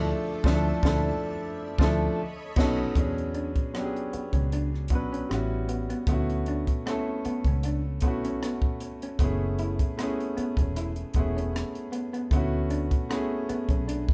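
Smooth and soulful, this short cut from a longer neo-soul and R&B piece moves with a gently swung sixteenth-note feel and the intimate sound of a band playing together in one room under light reverb. A clear, slightly boxy baby grand piano sits up front with accompaniment, joined by a round, foam-muted vintage electric bass that is dark, amped and punchy. For the first 2.9 seconds a shimmering vintage string machine of violins holds sustained, soft-attack sawtooth chords in the background, coloured by ensemble chorus and a moving notch, while the band plays an accent over the opening chords of Dmadd9 and B9. A compact cocktail drum kit comes in at 0.4 seconds, dry and up front, with dark cymbals, a high-tuned snare, a punchy kick, hi-hat, rim clicks and crash. From 3.3 seconds an electric guitar through a small old amp adds a warm, compressed, slightly broken-up picked second line as the harmony drifts through rich chords such as E13, Dmaj13 and F#m11.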